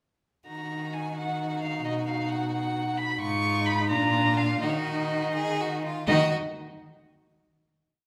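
Restless and urgent, this brief, complete classical-period movement for string quartet moves in a quick 6/8 at 82-90 BPM with a rubato feel in Eb minor, passing through chords such as Db9/Ab and Bb before settling on a final chord at 6.1 seconds. The rich, up-front first violin carries the bowed melody with smooth, even vibrato, while the clear, close second violin and the warm, expressive viola, touched with portamento, supply tremolo and sustained chords in the rhythm of the tune, the second violin adding answers at phrase ends. Beneath them the clear, distant cello holds a sustained bass with passing notes, all set in a wet recital hall reverb.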